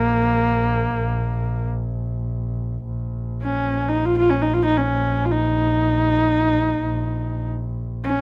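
Mongolian folk in free time, this short cut from a longer piece feels solemn and windswept. A bowed horsehead fiddle carries the melody throughout, its husky, biting tone sitting up front with vibrato and portamento, and a plate reverb trailing behind it. Beneath it, a bowed double bass holds a single low drone for the whole 8.2 seconds, smooth and even, its rich tone shaded by its own vibrato. The melodic idea is stated once and begins again at 2.9 seconds, giving the passage a patient, recurring shape. A small room adds a modest sense of space, and the rough home-demo mix keeps both players close and plain.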